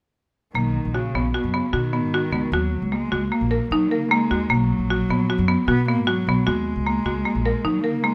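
A straight 5/4 pulse at 152 BPM drives this restless, shimmering contemporary instrumental fragment in B major, cut from a longer piece and moving through Bmaj7, D#m and B5 harmonies over about eight seconds. Up front, a buzzing marimba struck with hard mallets spins dry, woody arpeggios with a vintage, band-limited bite, while a pizzicato upright bass with steel strings anchors the low end from 0.5 seconds. Alongside them, a single bowed cello sings a dark, boxy second line with vibrato, soft attacks and expressive portamento, all captured by close, detailed microphones in light reverb.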